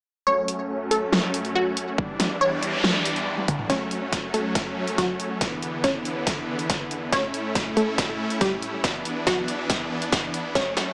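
Lush, detuned supersaw chords sit up front in this aggressive, menacing half-time wobble dubstep excerpt, pumping with sidechain under a low-pass filter sweep through the opening, while a punchy, wave-folded unison pluck carries the melody through digital delay and takes its own filter sweep from 3.7 seconds. An overdriven, layered dubstep drum kit with a huge snare and bright hats, re-recorded in a small room, adds fills, joined by a produced electronic kick from 2.0 seconds and by electronic noise sweeps and risers at 2.3 and 10.6 seconds. Moderate plate reverb and a small speaker sound frame the mix.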